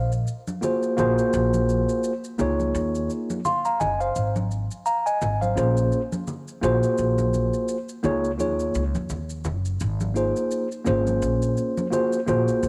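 A moderate plate reverb gives this relaxed, cool jazz-hop excerpt a soft glow, while the mellow tine electric piano sits up front, clean and heard through its built-in speakers. Set at 85 BPM in 4/4 with a swung sixteenth-note feel in Ab mixolydian, the piece unfolds as a single section lasting 12.7 seconds. The electric piano carries the accompaniment across its middle and upper register, opening on a sus2 chord before moving twice through maj9#11, 9sus4, 69 and minor ninth colours. Beneath it, a pizzicato upright bass with steel strings sounds woody, thumpy and warm, also placed up front. Maracas and congas enter at 0.1 seconds, close, dry and ringing, played with soft hands and sitting low in the mix behind the piano and bass.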